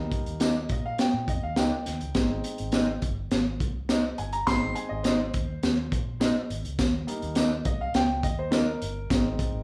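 A roomy, live-in-one-room sound with moderate large-studio reverb frames this uplifting, danceable excerpt of uptempo 1960s-style soul at 104 BPM in Ab major, where a clear, woody upright piano takes the lead throughout over a crunchy, saturated breakbeat drum kit with a high-tuned snare and tight kick sitting up front, a round, foam-muted vintage fingered electric bass, slightly broken-up lo-fi guitar stabs through a small old amp, and a jingly tambourine in the background, all moving between Eb and Ab chords.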